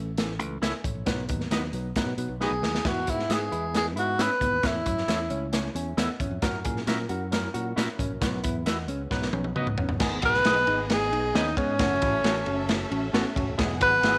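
Danceable and uplifting, this 1960s-style soul excerpt rides a gritty, saturated breakbeat kit up front, a punchy fingered electric bass, a worn, slightly out-of-tune tine electric piano in the background and bright picked stabs from a clean electric guitar, while a dark, compressed second electric guitar plays a riff through spring reverb, an up-front breathy tenor saxophone with scooped notes carries the melody, and lush bowed strings with tape echo join at 10.0 s for the closing section.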